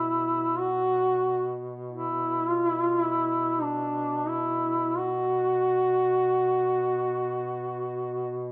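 Unfolding in free time, this short fragment of a mournful Caucasian folk lament is full of longing. A mellow duduk sits up front with the melody, singing with vibrato and scooped notes. A second, warm duduk holds a low drone beneath it for the full 8.5 seconds, and both reeds sound distant and roomy in a moderate recital-hall reverb within a dark production.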